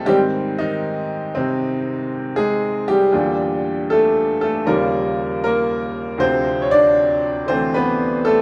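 Set in a moderate large-studio reverb with the feel of a live room, this brief 8.4-second cut from a longer solo jazz piece features a brilliant, woody upright piano placed up front with long sustain, swinging in a sophisticated yet playful mood through rich harmony that moves from Abmaj7 to Em7b5, Eb9 and Dm7.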